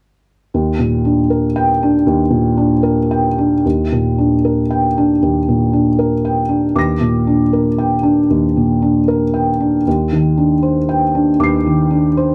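A felt-muted upright piano carries this intimate, tender fragment of neoclassical minimalist music alone, its mellow, softened tone sitting up front. It plays in Eb major at 78 BPM in 4/4, with a rubato feel that lets the pulse breathe. The part ranges from Eb2 up to C7, entering at 0.5 s on an Ebmaj7 chord and reaching a second passage at 3.6 s. Near its close the harmony moves to Cmadd9/Eb. A moderate studio reverb gives the piano a gentle sense of space.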